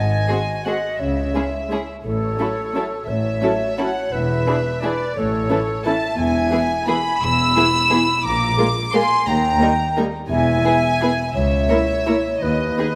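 Sweeping and dark, this orchestral ballroom waltz in 3/4 sways with uneven, rubato beats, taken from a longer piece. A violin section carries the melody up front, bowed sul tasto with a soft attack and a pure, floating tone, while a concert flute sings an expressive second line with vibrato. From 0.3 seconds a second violin section with a smooth top and an intimate viola section with light vibrato fill in the middle of the texture. Below them, a shadowy cello section and a rich double bass section share the bass line until 12.7 seconds. The harmony drifts through seventh chords, a diminished chord and a closing rootless chord, and a moderate scoring-stage reverb gives the ensemble a spacious, polished glow.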